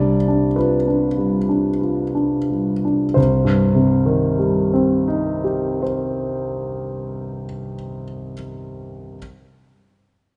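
Heard close and intimate in a moderate recital-hall reverb with softened highs, this brooding, bittersweet fragment of a romantic classical character piece features a solo concert grand piano, natural and up front with deep bass and audible action noise, playing in C minor and 3/4 at a rubato 41-52 BPM, slowing through the opening G7/C harmony before settling onto C minor at 3.2 seconds.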